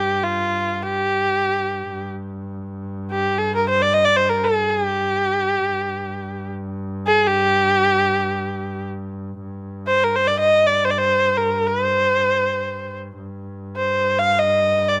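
A bowed double bass holds a distant, lightly vibrato drone on G2 beneath an up-front kamancheh that sings a smooth, even melody between F4 and F5 with vibrato and portamento, giving this free-time Persian modal passage in G dastgah shur a hypnotic, melancholic mood, softened by light reverb in an open-air recording cut from a longer piece.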